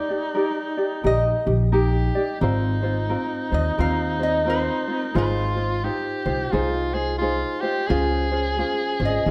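A lap resonator guitar carries the melody in this dreamy, languid Hawaiian excerpt, its metallic, nasal slide tone picked out with fingerpicks. A clear soprano saxophone sits up front on a second line, smooth on top with vibrato in a pop style, while a light, thumb-plucked ukulele supplies acoustic accompaniment. The upright bass enters at 1.0 seconds, a woody, thumpy pizzicato voice on steel strings that stays dark and forward in the mix. The tune moves at 88 BPM in 4/4 with a gentle swing on the eighth notes, in Ab major, drifting from Ebmaj7 to Ab69 at 2.4 seconds, then through Fm7/Ab and Dbmaj7. A wet recital hall reverb wraps the ensemble in a soft, spacious glow.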